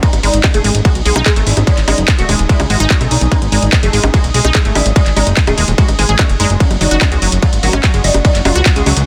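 Driving and intense, this psychedelic trance excerpt sets a woody, plectrum-plucked oud melody, treated with phaser, 12-bit sampler grit, digital delay and sidechain pumping, over a punchy unison pluck riff with tape echo, a very quiet formant-sweep wobble bass, a dark, warbling tape-like pad in the background, a fat, saturated analog bass and a distorted, up-front electronic kick alongside a drum kit of bongos, handclaps, metallic hi-hat and ride cymbal, set in light reverb and a dense, heavily limited modern master.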